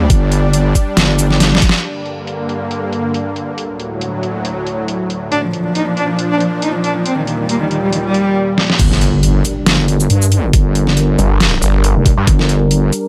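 Heavy wobble dubstep in G minor at 138 BPM with a swung half-time feel, this chaotic, menacing excerpt opens on a drop where a dark, saturated wobble bass and a knocking, overdriven kick pound beneath a lush supersaw pad and a dubstep kit with a deep snare and bright hats, then breaks down at 1.8 seconds, with an intimate cello melody entering at 5.3 seconds with light vibrato, an airy bow and delay, before an electronic impact at 8.8 seconds brings back the drop and a snarling, growling, detuned saw bass enters at 11.2 seconds.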